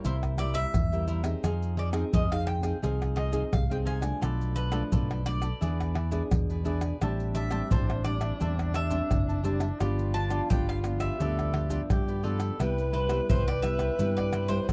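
Samba and choro at 86 BPM in C major, festive and playful, with a bright double-strung mandolin carrying the melody over crisp cavaquinho, fingerpicked nylon-string guitar with finger squeak, a round, punchy electric bass up front, and a close, dry bed of deep surdo, pandeiro, tamborim and maracas, joined at 7.0 seconds by a breathy, whispered tenor saxophone second line with vibrato and scooped notes, all in a dry, close 1970s-style studio sound cut from a longer piece.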